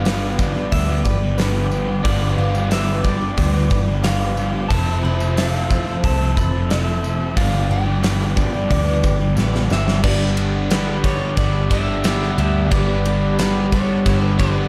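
A dark, warm small-room production frames this dreamy, wistful shoegaze and dream-pop excerpt at 90 BPM, moving from G7 and Fmaj7 in G mixolydian to a settled G major at 10.0 s. Up front, a round, foam-muted vintage bass and a punchy gated 80s kit with a fat snare and bright cymbals drive things, while behind them sit a thick fuzz riff, a double-tracked overdriven riff and a twangy, barely broken-up riff trailing reverse reverb. A slightly broken-up lead guitar through a small old amp sings its melody through analog delay over a shimmering, retro pulse-width pad, a very quiet boxy twelve-string picking arpeggios, and a faint jingly tambourine, with a drum fill at 9.4 s ushering in the change.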